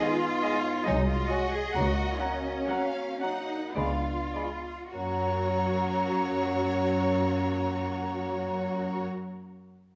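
Classical slow romantic orchestral movement in 3/4 and F# major, serene and tender at 50-73 BPM with rubato that slows through the first 4.9 seconds, as a rich, close violin section carries the melody over second lines from a lush, distant violin section in the background, a present but very quiet clarinet and an airy, hollow flute, while a clear viola section and a mellow, roomy bassoon accompany, a dark horn section holds sustained chords, an expressive, soft-attack cello section sits up front on the bass, and a smooth, even double bass section joins at 0.9 seconds, the whole ensemble heard in a wet stone room reverb.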